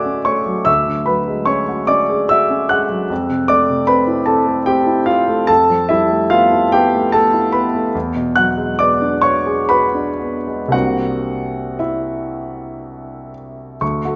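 A concert grand piano opens alone in this serene, luminous impressionist classical excerpt, its intimate, close-up tone carrying deep bass and the audible noise of its action. In an unhurried 3/4 with rubato, moving between 55 and 78 BPM, the piano drifts through lush extended chords from Dmaj7 and E13/D to Fmaj7, G13/F, E9 and finally C9 at 10.7 seconds. A wet recital hall reverb surrounds the natural, up-front sound.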